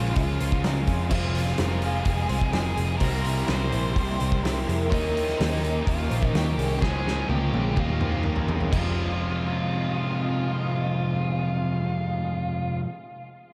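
A straight 4/4 pulse at 126 BPM drives this hazy, brooding shoegaze and dream pop excerpt in F minor, with a loose indie drum kit entering at 0.2 s, its fat snare, tight kick and dark cymbals sounding roomy and distant, then playing a fill from 6.8 s before dropping out at 8.8 s as the music moves from Dbmaj7, Fm7, C7 and Eb7 changes into a second section. Underneath, a round, punchy foam-muted electric bass anchors three overdriven guitar riffs sitting in the background: one crunchy and very quiet, one soaked in lush chorus, and one bright and double-tracked. A dark octave-fuzz lead guitar with tape echo carries the melody over a shimmering, ethereal pad with chorus, phaser and granular texture, while a very quiet, compressed clean guitar recorded direct plays arpeggios until 9.5 s, the whole mix bathed in lush hall reverb.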